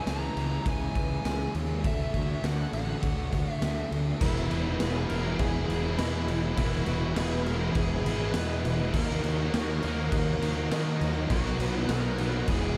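A hazy, blissful shoegaze and dream pop excerpt opens on a layered wall of guitars: a biting overdriven lead melody with analog delay, twangy lo-fi arpeggios through a small old amp under ensemble chorus, a hollow-body semi-hollow riff trailing reverse reverb, and a dark, very quiet fuzz riff, while an up-front fuzzed fingered bass and a gritty, punchy garage drum kit in a pumping stone room drive the straight 4/4 groove, until at 4.2 s a silky, detuned analog string pad and a double-tracked distorted guitar riff slip in quietly beneath the plate-reverb haze.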